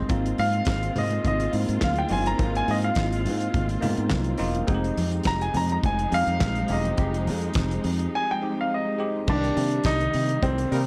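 An up-front, polished baby grand piano carries the melody as a solo through the first 9.3 seconds of this driving, glamorous disco excerpt at 105 BPM, moving over Ab6, Fm7 and Cm7 chords with a growly, tube-saturated fingered electric bass, a dry 70s drum kit with fat snare, tight kick, hi-hat, handclaps and crash cymbal, a bell-like electric piano with phaser, lush bowed strings in the background, very quiet distant congas, and a brief clear horn-section stab at 10.7 seconds, set in a dark production with light small-room reverb.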